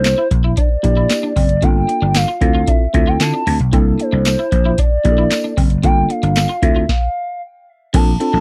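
A straight 114 BPM groove from a booming analog drum machine with a deep kick, crisp snare, metallic hats, handclaps and crash drives this dry, late-night early-eighties boogie funk excerpt, where a growly, punchy slap bass sits up front, a worn, slightly out-of-tune tine electric piano comps on C9, Gm9, Dm9 and C13 chords, a compressed guitar riff at the edge of break-up shimmers with ensemble chorus, a jingly tambourine rattles in the background until 6.5 s, and a smooth, gliding portamento lead with vibrato and chorus carries the melody before the band hits a stop at 6.9 s.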